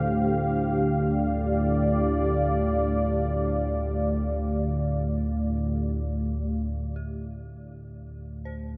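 Ominous and vast, this free-time dark ambient drone excerpt opens on a deep, full-bodied analog pad holding a Fadd9/D chord over a mellow, evolving sawtooth drone with chorus, both up front in a huge echoing reverb, until the pad stops at 6.8 seconds and a faint, eerie, inharmonic FM bell enters at 7.0 seconds with arpeggios through chorus, tremolo and tape echo.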